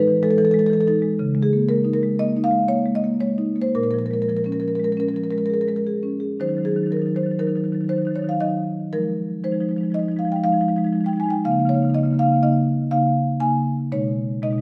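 A solo marimba played with soft mallets carries this contemporary classical excerpt, its rosewood bars giving a woody, mellow tone that sits up front. The piece moves in an uneven 5/4 at 118 BPM, and its rubato feel keeps the pulse flexible and the mood flowing and reflective. Set in Eb dorian, the writing spans A2 to Ab5 and passes through chords such as Dbsus2, Bbm7, Ebm, Fm7 and Db69, arriving on B69 near the close. A new section begins at 6.4 seconds, shifting the harmony while the marimba keeps its round, warm sound. A wet stone room reverb with a 1.2-second tail surrounds each note.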